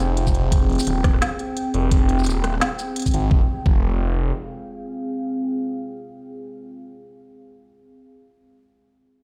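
A deep, moody pad of sustained chords with chorus and sidechain pumping opens together with a swirling, thick phased saw bass on an F minor chord in this heavy, tense half-time drum and bass excerpt at 172 BPM, as an organic electronic kit with a woody snare, smooth hi-hats, rim click and shaker enters at 0.2 s, joined at 0.3 s by an up-front, overdriven knocking electronic kick, before the drums fall away by 3.8 s and the bass drops out at 4.3 s, leaving the dark pad to carry on alone until 6.9 s, all set in a large, reverberant room.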